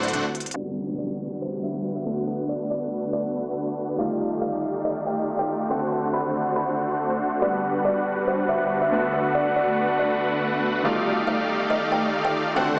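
Huge, detuned supersaw chords sit up front in this euphoric, lush future bass excerpt, carrying a riff at 140 BPM in a half-time feel in G major, their tape-coloured sound dulled by a low-pass filter and a filter sweep that runs from 0.6 seconds to the end. A plucked, woody kalimba with a hollow, dark tone plays the melody through a digital delay, while an ethereal, airy pad holds mellow sustained chords in the background, thickened by ensemble chorus, phaser and its own reverb, and also swept by a filter. A clear concert grand piano with deep bass enters at 0.5 seconds as quiet accompaniment behind the synths. Crisp, layered electronic hi-hats play only a brief fill at the very start, and a faint downlifter and noise sweep drifts by in the background. The harmony cycles through D7, Gmaj7, Bm7 and Ebmaj9#11, and the whole mix sits in a wet digital room with a muffled, small-speaker character.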